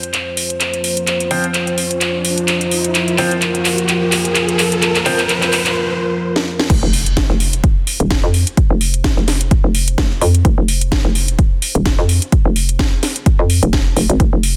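A hollow, knocking FM bass and a punchy electronic kick hit at the drop at 6.7 s in this aggressive, gritty bass house excerpt, after a build-up where a dark, nasal, detuned analog pad pumps with sidechain, a brilliant grand piano plays tape-echoed stabs, a house kit with cracking snare and metallic hats runs through drum fills, and a background riser leads to an impact, in a dense, heavily limited mix with light reverb.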